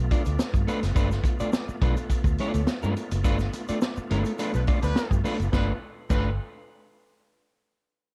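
A reedy tonewheel organ holding a G9 chord through a slow rotary speaker with chorus vibrato and key click opens this energetic, funky fragment of a longer piece, sitting in the background over a round, foam-muted fingered electric bass that stays up front. A vintage acoustic drum kit follows at once with a punchy kick, a high-tuned snare, dark cymbals and hi-hat, while a grainy egg shaker adds a faint, close and dry pulse. An electric guitar at the edge of break-up comps alongside, its slightly gritty, fingered tone softened by spring reverb. The full band hits a shared accent from 3.2 seconds, and a clear horn section with light vibrato and a smooth top joins at 4.5 seconds to play a second line. The arrangement moves into a new section at 5.5 seconds, the organ drops out at 5.8 seconds, and the whole mix has a dark, warm, dry production with little reverb.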